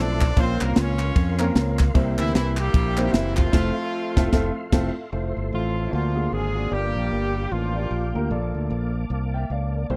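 A clear, punchy horn section opens this jubilant, soulful uptempo gospel excerpt at 151 BPM in F major, playing a tight pop-style melody with light vibrato and octave doubling over a swung 4/4 groove. Underneath, a woody upright piano with audible action noise and long sustain supplies the accompaniment, while a soft, flute-like tonewheel organ holds sustained chords in the background through a fast rotary speaker and chorus vibrato. A bright, punchy fingered electric bass sits up front, and a crisp fusion drum kit with dark cymbals, a medium-tuned snare and tight kick drives the opening along with human-sounding group handclaps, the drums dropping out at 4.9 seconds during a band accent. At 5.5 seconds a breathy alto saxophone enters with a subtoned, vintage jazz voice, its melody sounding over chords such as D7alt and Gm7. The sound is dry and close, in the manner of a 1970s studio recording.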